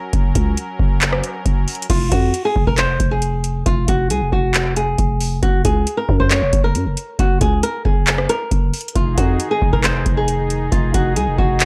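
Eerie and melancholic, this half-time trap cut at 136 BPM in F phrygian opens on soft, shimmering organ celeste chords over a growling, buzzy 808-style bass and a booming, tape-warm analog drum machine with deep kick, metallic hats, handclaps and rim clicks, before a filtered, fingerpicked flamenco guitar takes the melody at 1.9 seconds and the organ returns at 9.0 seconds, all in a dark, dry production.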